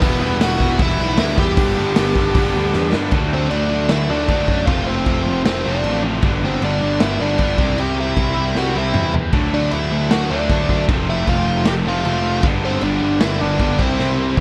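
A straight 4/4 punk rock pulse at 155 BPM in G major drives this upbeat, energetic clip, with a gritty, punchy raw garage drum kit of kick, medium-tuned snare, hi-hat, crash and toms that drops into half time at 3.1 s and fills at 8.6 s and 14.0 s. Up front, a smooth overdriven lead guitar carries the melody through digital delay, over a growly fuzz-toned picked bass and three riffing guitars: a crunchy overdriven one and a bright, double-tracked, compressed distorted one in the background, plus a very quiet sludgy one. The chords cycle through Em, G, D, F and C in a dry mix with little reverb.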